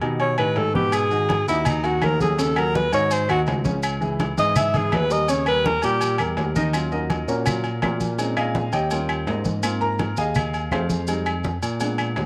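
A driving 4/4 at 166 BPM with a straight feel sets up this sophisticated Afro-Cuban jazz excerpt, as damped, thick-skinned congas, ringing vintage agogo bells and timbales, woody claves and distant, grainy maracas churn beneath a barky tine electric piano holding down the bass line and a present baby grand piano comping. A breathy, whispered alto saxophone with light vibrato and a soft subtone sits up front for an intimate solo from 0.2 to 6.2 seconds, after which the piano takes the lead at 6.7 seconds over rich chords such as Ebm9, Eb13 and Fm9. The whole band sits in a small room with moderate spring reverb.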